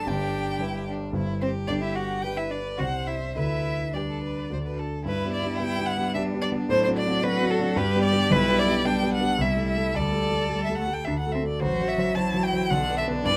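Graceful and lively, this brief cut from a quick classical-period movement for piano quartet in triple time sets a rich, expressive violin melody with vibrato and portamento up front, over a second violin and a clear cello playing smooth, even secondary lines, while a dark, mellow, vintage-sounding grand piano with deep bass and audible action noise supplies close, intimate accompaniment in a dry, detailed room.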